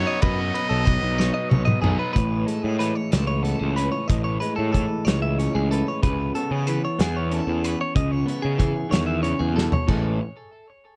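A growly, fuzz-drenched picked bass sits up front in this playful, wistful cut from a longer math rock and midwest emo piece in A lydian, moving at 62 BPM in a straight 6/8 over chords of Badd9, Amaj7 and C#m7. A bright trumpet with light vibrato sings a brief pop-style melody over bright, compressed clean guitar arpeggios carrying tape echo and a double-tracked overdriven guitar riff, while a loose indie drum kit with dark cymbals, a punchy kick and a pumping room sound plays throughout with fills around 1.2 and 9.6 seconds. From 2.1 seconds a dark, slightly broken-up guitar through a small old amp takes over the accompaniment, all captured in a dry sound.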